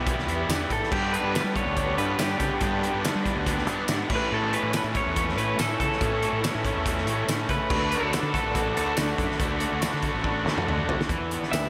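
A double-tracked, overdriven stack guitar riff leads this carefree, jangly indie rock excerpt at 142 BPM in A mixolydian, backed by a fuzzed fingered bass, a loose drum kit with punchy kick, fat snare, dark cymbals and tambourine that rolls into a fill at 10.2 seconds, a twangy lo-fi guitar melody drenched in lush chorus and delay entering at 0.7 seconds, and a silky, warbling analog string pad sitting very quietly beneath, all set in a dreamy, reverb-soaked mix.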